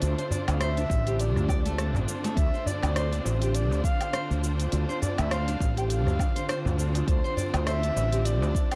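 A growly, punchy fretless electric bass with ensemble chorus and sidechain pumping sits up front in this hypnotic organic downtempo piece at 102 BPM in D minor, joined by a deep electronic kick from 0.9 seconds and a crisp, saturated darbuka in the background from 0.3 seconds, while a dark kamancheh with airy bow, portamento and digital delay sings its intimate melody over lush, bowed symphonic strings pumping on a sustained Dm7, bright fingerpicked nylon-string guitar arpeggios through delay, and a deep house kit of smooth hi-hat, cabasa, rim click and woodblock swinging gently on the 16ths, all in a small, softly reverberant room with a dark, warm production.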